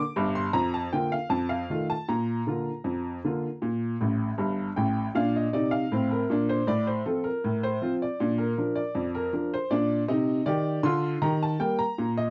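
Playful and lively, this short ragtime piano piece, cut from a longer work, moves at 79 BPM in 2/4 with a straight feel in B-flat major. A bright upright piano plays solo throughout its 12.3 seconds, ranging from G1 up to D6, with a brilliant, woody tone, long sustain and audible action noise that make it feel intimate and up front. The opening passage runs to 5.2 seconds, closing with a piano fill from 4.0 to 5.2 seconds before a second passage carries the tune through to the end. The harmony leans on B-flat and F7, touching F over A and closing toward E-flat. The sound is dry and close, in the manner of a 1970s studio recording, with a moderate booth ambience around the instrument.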